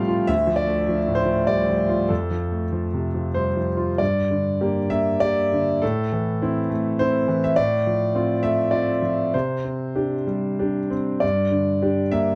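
A faint mains hum and moderate studio reverb surround an intimate, up-front concert grand piano with audible action noise, deep bass, a boxy tone and long sustain, playing solo in this reflective, wistful neoclassical minimalist fragment in a rubato 3/4, with chords drifting from Dm and F into a new section at 4.0 seconds that moves through Gm, Am, F/A and Csus2 before settling back on Gm.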